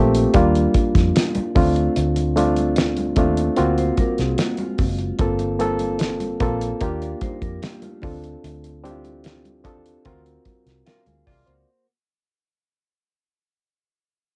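Warm and smooth, this slow 74 BPM slice of lush 1970s-style soul is built on a bright, reedy electric piano, lightly overdriven and up front, over a round, foam-muted fingered bass and a cloth-damped drum kit with a fat snare, tight kick and gritty, rolled-off top. Very quiet ringing congas sit underneath the Ebmaj9 to D7alt changes, a dark, clean electric guitar riff slips in from the background at 3.6 seconds, and a distant jazz-style horn section adds faint stabs at 10.1 seconds. The dry home cassette recording gives it a vintage tape colour, and the band accents together from 8.4 seconds as the passage fades out.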